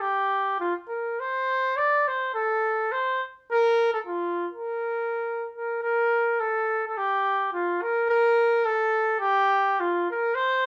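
A straight, two-beat pulse carries this bouncy, jolly piece of alpine folk, cut from a longer performance. A single flugelhorn plays solo throughout, from 0.0 to 10.7 seconds, ranging from F4 up to D5. Its tone is clear with a soft attack and a classical poise, and though it sits up front, it carries a distant, roomy quality. The melody is stated once and then repeated, with the second pass beginning at 5.8 seconds. A moderate studio reverb places the horn a little further back in the room, giving the cheerful tune a gentle, open air.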